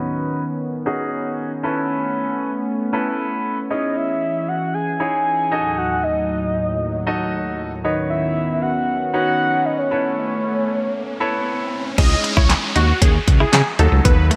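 In a straight dance-pop pulse, this driving, confident excerpt opens as a filtered build: a clear, polished baby grand piano plays accompaniment over a sweeping, resonant pad of detuned, warbling vintage sawtooth chords, both pumping under sidechain compression through a low-pass filter sweep. At 3.7 seconds a soft, round, octave-layered synth lead takes the melody, its dark, full-bodied tone colored by chorus, phaser, vibrato and digital delay, and from 10.2 seconds electronic risers and downlifters build tension toward the drop. At 12.0 seconds the full groove arrives: a house drum kit with punchy kick and snare, bright hats, handclaps and crash, all in gated reverb, joins a glossy, chorused synth bass sitting up front. A thick, bold, wave-folded unison lead carries the melody now, pumping with delay, and a clean, direct-recorded electric guitar plays a compressed, picked riff soaked in lush chorus further back. 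Add9 and diminished chords drift beneath it all, and the bright 1980s-style digital production places everything in a lush hall reverb.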